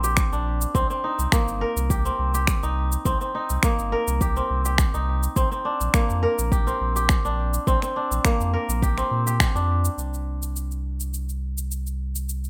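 Organic downtempo at 104 BPM with a mystical, meditative air, this excerpt from a longer piece sets a bright, ringing kora playing up-front arpeggios through a low-pass filter and digital delay over a round, sine-like sub bass with sidechain pumping, layered electronic shaker and finger snaps, and a deep electronic kick that drops out at 9.5 seconds after a band accent at 9.4, as the harmony moves between Bb and Cm7 in a lightly reverberant, rough home-demo mix.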